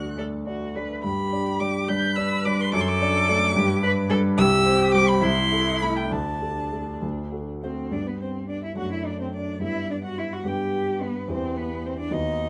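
A 6/8 pulse moves at 65-74 BPM in dotted quarters, bent freely with rubato, in this cheerful, graceful passage from a quick classical-period movement for piano trio in G major, cut from a longer piece. Up front, a dark, smooth-topped violin carries the melody with soft attacks, vibrato and expressive portamento. A more distant cello sings a second line with its own vibrato and slides, while a warm grand piano with long sustain sits close and supplies the accompaniment. Light reverb and close, detailed miking frame the trio, and at 7.9 s the music moves into a new section that returns to G and later touches E minor.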